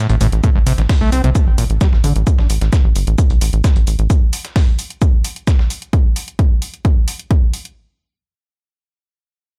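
Dark and driving, this short cut from a longer peak-time techno track moves in a straight four-four pulse. It opens with a brief break before a heavy, layered electronic kick drum arrives up front at 0.4 seconds and runs until 7.4 seconds, anchoring an A minor groove. A squelchy, resonant overdriven acid bass plays a riff from the very start, distorted and pumping against the kick, with digital delay and a filter sweep carrying it to about 2.1 seconds. Beneath it, a tight, punchy sequencer bass built from sawtooth and square waves plucks short decaying notes with tube saturation and the same pumping feel, stopping at 4.1 seconds. Two drum parts fill out the top: a dusty, compressed sampler-style kit with hi-hat, shaker and a medium-tuned snare, all high-pass filtered, and an analog-sounding electronic hi-hat re-recorded in a small room, both pumping in time. A digital ambience surrounds the mix, and the groove gives way to a short section with the chords dropped out near the end.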